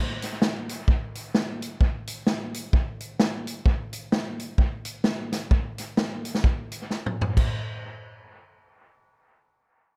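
A dry recording captures a cheerful, bouncy ska drum kit, cut from a longer piece, with a swinging big-band feel. The acoustic kit sits up front with a natural, big-room character: a punchy kick, a medium-tuned snare, hi-hat, toms and crash cymbal, all touched by a dub echo. The drums enter at 0.2 seconds, play a fill from 6.9 seconds, and stop at 7.5 seconds, just as a new section begins.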